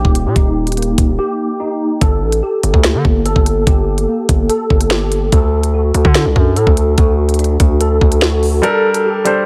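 Tense and dark, this half-time drill cut at 145 BPM in G harmonic minor pairs a mellow, clean tine electric piano playing arpeggios, colored by ensemble chorus, a low-pass filter and tape echo, with a heavy, saturated 808-style bass whose distorted sine tone carries a noise layer and a fast attack. The electronic drum kit sits up front with a knocking kick, sharp snare, crisp hi-hats and finger snaps, all roughened by vintage 12-bit sampler grit, and it drops into a brief break from 1.2 to 2.0 seconds. At 8.6 seconds the bass stops and the kick falls silent as a dark, deep-bottomed concert grand piano enters through a low-pass filter over a Gmadd9 chord, with little reverb around the close, direct sound.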